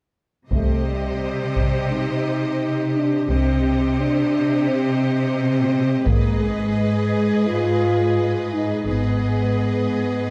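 A dark, warm production sits in a moderate scoring-stage reverb, giving this short cut from a longer cinematic score a brooding, dramatic weight at 86 BPM in a straight 4/4. Up front, a dark, roomy French horn section holds sustained chords with light vibrato, while a rich, focused cello section and a smooth, even double bass section carry the bass line, the basses dropping out at 9.5 seconds. A distant taiko ensemble struck with heavy sticks booms through a large room until 7.4 seconds, driving the epic mood. Above, a clear, intense violin section sings a lush, vibrato-laden melody from afar, supported by a second violin line in the background and a clear viola section playing accompaniment. The harmony moves from C minor to A-flat minor at 6.1 seconds, deepening the shadowy tension before the passage ends at 10.3 seconds.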